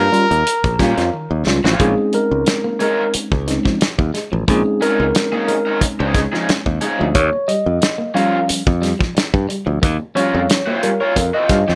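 Funk at a cool, straight 90 BPM in Bb dorian, this clip opens with a breathy, whispered trumpet phrase that stops at 1.4 seconds, over a slightly broken-up electric guitar riff with harmonic tremolo sitting in the background, a growly, punchy fingered bass up front, and a soul drum kit with a tight kick, medium-tuned snare and hi-hat in a small room. A raw, overdriven garage guitar joins at 0.8 seconds, and after a drum fill the worn, slightly out-of-tune tine electric piano turns its stabs into a solo from 1.8 seconds. The harmony moves between Eb9 and Bbm11 under light reverb.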